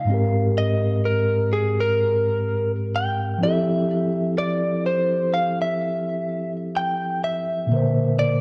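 Dreamy and smooth, this gently swung R&B fragment, cut from a longer piece, places a picked, compressed clean electric guitar melody, recorded direct and up front, over a mellow tine electric piano sounding through its built-in speakers, as the harmony moves from Abmaj9 to Fmaj9 at 3.4 seconds and Bbadd9 at 7.7 seconds inside a moderate spring reverb with the intimate character of a home cassette recording.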